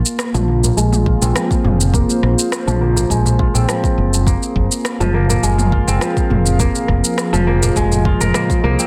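A dense, heavily limited modern mix sits in light digital ambience, opening this mystical, meditative stretch of organic downtempo cut from a longer piece and tuned to A4 = 444 Hz. Up front, a crisp, ringing kora plays fingerpicked arpeggios from the very start, colored by tape echo and a low-pass filter that sweeps across its whole run. A mellow, round fretless electric bass sits close and dark in the low end, while a warbling, detuned tape-like pad with a slow attack holds sustained chords in the background, treated with chorus, built-in reverb and sidechain pumping. An overdriven organic electronic kit supplies rim clicks, shaker and toms, joined at 1.1 s by a soft, overdriven electronic kick, and a very quiet darbuka with a clay shell and natural skin adds gentle hand-played touches from a live room. The harmony rests on Bb5 before moving to Fm7 at 6.6 s, giving the steady 4/4 groove a nostalgic, lo-fi glow.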